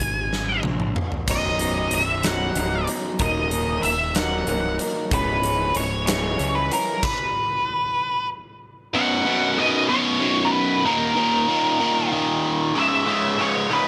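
A slow 6/8 pulse at 63 BPM, counted in dotted quarters with a straight feel, carries this bittersweet, restless stretch of quiet-loud alternative rock in B major, cut from a longer piece. A huge arena drum kit opens with a fill, its punchy kick, medium-tuned snare, toms and bright cymbals ringing in a pumping hall sound, alongside a growly, fuzz-laden fingered electric bass. An octave-fuzz lead guitar carries the melody up front throughout with a warm, distorted tone. From 1.3 seconds, a lo-fi, slightly broken-up guitar through a small old amp picks arpeggios through analog delay over chords moving from B to D#m and C#m. The other parts fall away by 7.2 seconds, leaving the lead guitar alone until 8.9 seconds, when a biting, double-tracked overdriven guitar enters with a phaser-tinged riff over B5, D#5 and C#m, sitting loudest in the mix, all framed by light reverb and a small room ambience.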